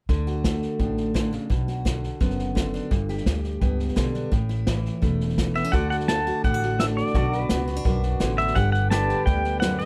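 A full-bodied picked acoustic guitar, a woody, growly upright bass and a distant, roomy drum kit with a punchy kick and bundle sticks set up an easygoing, down-home honky-tonk groove in a dry sound. At 5.6 seconds a clean, compressed pedal steel guitar takes a solo high above, played with fingerpicks, slide and volume swells. Just behind it, a second pedal steel adds soft sustained chords bathed in lush chorus until this short cut from a longer classic country piece ends.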